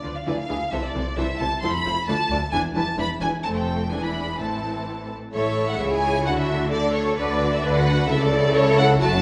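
A quick, graceful and lively classical-period movement for string orchestra at 131 BPM in 2/4, cut from a longer piece, it opens in A minor and moves to A major from 5.3 s. A lush symphonic violin section carries the melody up front with smooth vibrato, over a chamber violin section on a second line, a focused, close viola section in accompaniment, and a bowed cello section and distant double bass section sharing the bass. The recital hall reverb is wet, lending the ensemble the bloom of a church or concert hall.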